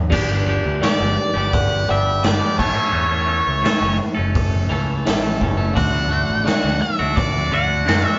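Trippy and hypnotic, this psychedelic rock fragment sets a clean, twangy electric guitar riff coloured by phaser over a growling, overdriven picked bass and a gritty, saturated garage drum kit with a punchy kick and medium-tuned snare, while a dark octave-fuzz lead guitar joins at 0.8 s, the band heard playing live together in one room with moderate reverb and a muffled high end.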